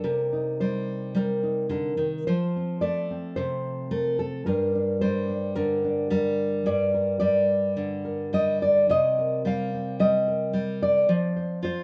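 Wistful and haunting, this short folk fragment features a single nylon-string guitar played fingerstyle at 109 BPM in a straight 4/4. The guitar sits up front in the mix, with a full-bodied, deep classical tone and a thumb-plucked character. Its range spans from G2 up to F5, and the instrument is tuned slightly above standard pitch, to A4 = 441 Hz. The harmony moves from Cm7 to F and then Gm, returning to Cm7 around 8.9 seconds before settling on an F5 near 11.1 seconds. A moderate studio reverb lends the roughly twelve-second passage a gentle sense of space, and the music is cut from a longer piece.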